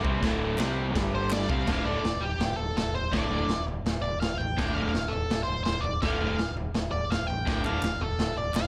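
A raw, menacing garage rock excerpt opens with a bright, double-tracked overdriven guitar riff through spring reverb, a growling fingered bass and a saturated drum kit with a boomy kick, pumping in a small room, with crisp group handclaps in the background from 0.6 seconds and a dark octave-fuzz lead guitar, distorted and trailed by tape echo, taking the melody from 1.1 seconds.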